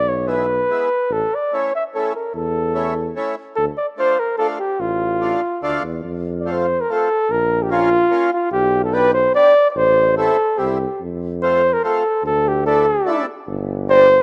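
A warm, up-front flugelhorn carries the melody over a distant, roomy tuba with light vibrato from the first moment, joined at 0.3 s by a reedy, full accordion, in this jolly, festive alpine dance-band piece in three, cut from a longer performance and heard as a rough home demo mix with light studio reverb.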